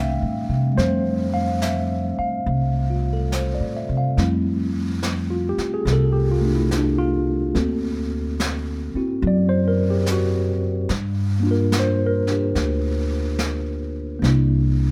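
A worn, slightly out-of-tune tine electric piano and a woody, growly upright bass open this tender, late-night jazz ballad together, both sitting up front in the mix. The bass is plucked on steel strings with a thumpy attack, holding down the low end beneath the piano's clean chords, which sound as if heard through the instrument's own built-in speakers. At 0.8 seconds a brushed drum kit slips in quietly behind them, its medium-tuned snare and hi-hat carrying a natural studio-room sound and an easy swing. The harmony settles on Fmaj7, then shifts at 4.2 seconds into a new passage that moves through D7b13 and Gm7 before arriving on C9. A light reverb softens the whole, and the clip is cut from a longer piece.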